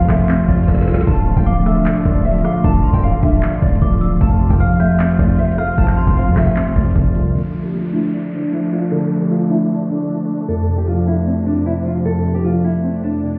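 A half-time trap beat at 153 BPM in 4/4 drives this brooding, eerie hip hop excerpt in D minor, its knocking kick, woody snare, metallic hats, handclaps and rim clicks running from 0.1 s, with a drum fill near 0.7 s, until the kit drops out around 7.2 s. A distorted 808-style bass, saturated and aggressive with a noise layer over its sine core, holds the low end until 7.3 s. A bright, fingerpicked nylon-string guitar carries the melody throughout, softened by a low-pass filter and trailed by digital delay, while warbling lo-fi synth keys sit up front with nostalgic chorus-thickened chords cycling through F and Dm. Behind them a muted, con sordino string section bowed with vibrato sustains veiled, distant harmony, and a ringing, inharmonic FM bell adds a high second line between 1.5 and 6.2 s. After the beat falls away, a downlifter and swell arrive under a long filter sweep, and the whole mix sounds muffled as if heard through a wall, set in a stone room's reverb.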